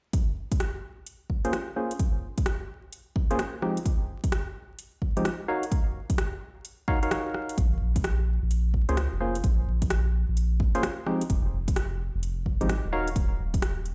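UK garage in a two-step style at 129 BPM in Bb minor, this moody late-night excerpt sets a punchy, tape-warm electronic kick and a house kit of metallic hats and rim clicks under a hollow, percussive organ stab that enters at 1.4 seconds with chorus, delay and a filter sweep, before a deep, round dub sub bass with tube saturation and sidechain pumping arrives at 7.6 seconds, all over Bbm7, Fm7 and Ebm7 chords in a large, reverberant room with vinyl crackle.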